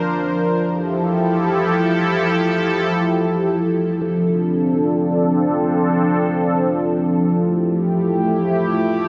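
Floating in free time, this short hip hop fragment in D minor unfolds as a single sweeping, resonant synth pad playing alone from 0.0 to 9.1 s. Its ethereal, spacious mood comes from a detuned sawtooth body layered with sine and a sub octave, shaped by a slow attack into long, sustained tones that sit bright and up front within the F3 to C5 range. Chorus and a low-pass filter color the pad, and from 4.0 s a filter sweep gives its full-bodied sound an evolving quality. The harmony drifts from C9sus4 to Fmaj9, settles on Dm7 when the second section begins at 4.0 s, and returns to Fmaj9 at 7.4 s. A huge ambient reverb with a 7.6-second decay surrounds everything, so the chords hang in the air as the passage, cut from a longer piece, comes to a stop.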